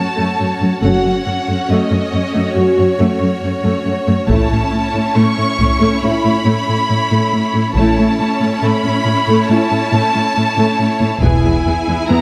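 Adventurous and heroic, this cinematic, epic orchestral film score moves at a steady 69 BPM in straight 4/4, tuned to A4 = 442 Hz, and is cut from a longer piece. A focused, up-front violin section carries the melody with vibrato and a smooth top, while a second, brighter and more intense violin section plays a line beneath it. Close violas supply accompaniment with soft attacks and expressive portamento, and a rich, even cello section anchors the bass alongside a bowed double bass section that enters at 0.8 seconds. A mellow, distant French horn section holds sustained chords from 0.8 to 11.6 seconds, lending a roomy depth behind the strings. A taiko ensemble struck with hard sticks punctuates the music from 4.3 to 6.0 seconds and again at 11.2 seconds, as the harmony moves from Gbm to A and finally to E. Moderate scoring stage reverb gives the whole a lush, spacious sound.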